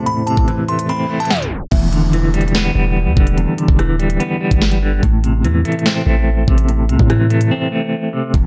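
A tense, dark half-time drill hip hop excerpt opens with a delicate, tinkling synth bell and a deep, moody ambient pad over a clean semi-hollow electric guitar with tremolo, while a crisp drill kit with knocking kick and sharp snare carries lo-fi sampler grit, a background reverse cymbal and downlifter lead into a tape stop at 1.3 seconds, and from 1.7 seconds a long, mellow, sine-toned 808 bass sits up front beneath the guitar in a dry mix.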